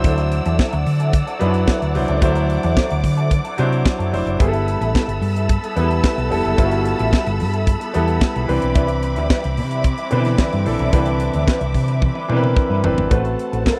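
A straight disco groove sets a sultry, danceable mood, led by a tight funk drum kit up front, with hi-hat, a tight kick and a high-tuned snare that sound dry, airy and polished. A round, punchy hollow-body electric bass, played with the fingers, sits equally forward with a dark, amped tone, and it stops at 13.6 seconds. A clear grand piano plays intimate, natural-sounding accompaniment, its action noise audible, while a mellow, clean electric guitar with wah sits in the background. Above them a lush symphonic string section holds bowed chords with vibrato and expressive portamento. The harmony moves through D9, G69 and Cmaj9 before a drum fill from 12.0 to 13.1 seconds leads to Am69, all in a close, small-room 1970s-style studio sound in this short cut from a longer piece.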